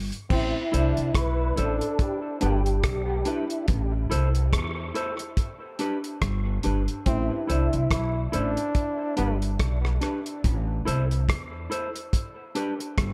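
Hypnotic and heavy, this dub reggae excerpt in A minor rolls at 71 BPM with a swung sixteenth feel over a steady Am–G sway, as a woody, thumpy pizzicato upright bass and a cloth-damped, thuddy drum kit with dark cymbals, tight kick and rim clicks sit up front, a round tonewheel organ with slow rotary swirl and dub echo carries the melody until 7.9 seconds, a jazz-styled trombone with vibrato and scooped notes adds a second line until 9.4 seconds, and a clean, fingered electric guitar with dub echo fills in the accompaniment beneath light studio reverb.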